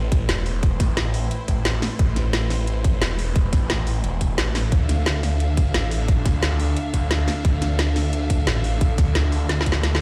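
The recording sounds dry, as if played through a big sound system in a bare stone room. This is a dark, mechanical section of technical drum and bass, cut from a longer piece, at 176 BPM in 4/4 with a straight feel, set in A minor and moving from Am to Dm at 4.7 seconds. A snarling, growling sawtooth bass sits up front in the low register, its detuned unison tone distorted, overdriven and compressed, with a fast attack and a moving notch running through it. Behind it, a rich, bowed studio string section holds smooth, even chords with light vibrato, pumping against the sidechain. The layered electronic drums, re-recorded in a small room, pair a tight, forward kick with a woody snare and metallic hi-hats. A drum fill arrives at 9.5 seconds, and as the kick stops at 9.7 seconds a very quiet electronic swell appears.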